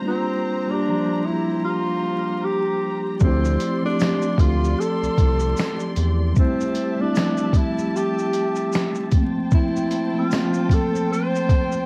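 This reflective, melancholic lo-fi hip hop piece opens on a mellow tine electric piano played through its built-in speakers, with a lush bowed string section holding soft-attack, sul tasto chords beneath it, both colored by cassette tape and plate reverb. Almost at once, a breathy tenor saxophone takes the melody in a jazz style, its whispered subtone tone carrying vibrato and scooped notes and sounding distant and roomy yet still up front. At 3.2 seconds, a sampler-style drum kit arrives with a swung sixteenth feel, compressed, pitched down and muffled, with a thumpy kick, a medium-tuned snare, hi-hat, finger snaps and shaker. A round analog bass enters alongside the drums, blending sawtooth and sine tones with ring modulation and transformer saturation, before dropping out at 6.3 seconds. A jingly, band-limited tambourine sits in the background over harmony that moves from C7sus4 through Dm7 and Fmaj9 to Gm11. 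The recording carries a home-cassette character, with vinyl crackle and light reverb.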